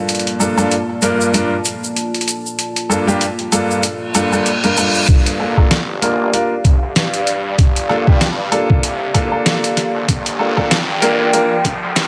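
Brilliant, up-front baby grand piano stabs lead this playful, swaggering glitch hop excerpt over a moody analog pad with chorus and phaser, gritty pitched-down boom bap hi-hat and snare, and a grainy shaker that stops at 5.1 seconds, when a thumpy electronic kick and a thick, swirling detuned saw bass arrive just after a reverse cymbal, opening a build-up with a riser and a filter sweep on the piano.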